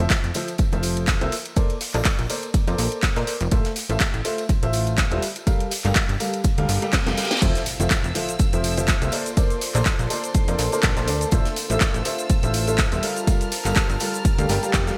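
A punchy electronic kick sits up front in this uplifting, euphoric piano house excerpt, layered with a house kit of cracking snare, handclaps, hi-hat, cabasa and crash cymbal treated with gated reverb. A very quiet, dry funk kit adds ride, a shimmering hi-hat and a medium-tuned snare, and a faint acoustic tambourine plays underneath, all over lightly swung sixteenths. A woody upright piano riff carries the Fmaj7, Bbmaj9 and Gm9 chords through lush chorus, digital delay and sidechain pumping, joined by a plucky, funky analog bass with a fast, decaying sawtooth attack. A reverse cymbal and a drum fill lead into the drop at 7.4 seconds, where an electronic impact hits and a soft-edged, sul tasto chamber violin section enters with sustained chords in the background, followed at 9.2 seconds by a deep, moody, detuned pad with a slow attack and long release. The sound is vivid 1980s-style digital production, set in small room ambience with light reverb.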